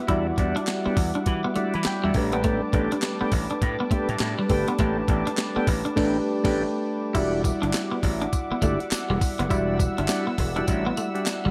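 New jack swing R&B at 102 BPM in E minor, slick and bouncy with a swung 16th-note feel, built on an up-front, compressed breakbeat sampler-style kit with thumpy kick, handclaps and tambourine in gated reverb, a punchy overdriven slap bass, round chorused electric-piano-like synth keys, a detuned, warbling analog pad holding sustained chords, a twangy clean guitar riff and background tonewheel organ stabs with key click, slow rotary speaker and digital delay, moving from Em9 to A9sus4 and back to Em9 at 7.1 s after a full-band accent at 6.0 s, in this excerpt from a longer piece.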